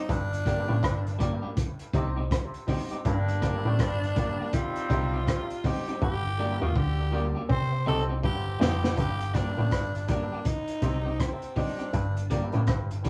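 Laid-back and hypnotic, this roots reggae excerpt at 81 BPM in G minor sways on a 16th-note swing, circling between Gm and Cm throughout. A raspy, growling tenor saxophone carries the melody from the start, close-miked and full of vibrato, until it drops out at 12.3 seconds. Underneath, a round, punchy hollow-body bass anchors the low end while a crunchy breakbeat kit sits up front with a tight kick, rim clicks and a dark, saturated tone, adding a fill between 6.0 and 9.0 seconds. A stringy clav riff runs through auto-wah and tape echo, an electric guitar at the edge of break-up supplies compressed accompaniment, and a slightly detuned, woody upright piano adds short stabs in the background. A mellow, vintage horn section briefly plays a tight second line from 3.0 to 5.6 seconds. Small-room reverb and a rough rehearsal-room sound give the whole piece a loose, lived-in feel.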